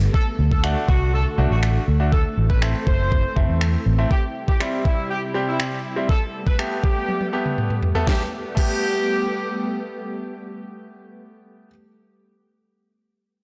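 A blown-out, overdriven recording with light small-room reverb carries this upbeat, carefree dance-pop excerpt, where silky, vintage string-machine chords treated with phaser and ensemble chorus sit beneath a brilliant, short-sustain grand piano, a dark, round, foam-muted fingered bass that drops out at 4.0 s, a distant, roomy horn section carrying the melody through digital delay (all four of these parts pumping with sidechain), and an up-front electronic R&B kit with a knocking kick, deep snare and finger snaps that plays a fill from 7.1 to 8.1 s over a D, Am, C, Gadd9 progression.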